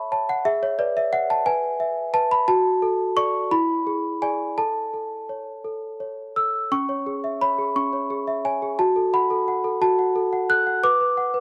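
A light reverb gives this brief classical excerpt, cut from a longer piece, a soft halo around a single celesta playing alone from 0.0 to 11.4 s. It is a tender, dreamy lullaby in 6/8 at about 58 BPM counted in dotted quarters, with uneven beats and rubato that let the pulse breathe. The celesta sits up front, bell-like and delicate, its hard felt hammers giving a brilliant, sweet ring across a span from C#4 up to F#6. The opening passage moves through E/G#, D/F# and E7 to settle on A, and at 6.7 s a second section turns darker with C#m, F#m and Bm.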